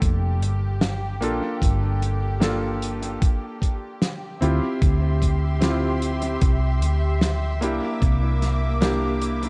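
A slow 75 BPM groove in straight 4/4 carries this hazy, nostalgic vaporwave excerpt in G dorian, where a thumpy, tape-warm electronic kick sits up front until 8.2 seconds beside a soul drum kit's fat snare and hi-hat touched with analog delay, a dark, round hollow-body electric bass pushed forward through tube saturation, an electric grand piano with clangy lows, short sustain, subtle chorus, delay and 12-bit grit comping over Gm7, Dm11 and C9, and a biting, intense bowed string section holding close sustained chords with light vibrato, all set in an echo-heavy, cassette-dulled mix with light reverb.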